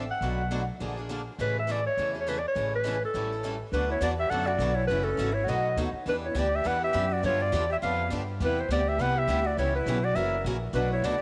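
Charming and lively, this brisk 205 BPM acoustic string swing excerpt in A major moving to D major at 3.7 s sets a breathy, scooped clarinet melody up front over a woody, thumpy pizzicato upright bass and two bright, boxy picked acoustic guitars (one with fresh parlour strings and finger squeak) in moderate plate reverb, as a soft-attack, straight-toned concert flute joins with a second line at 3.7 s.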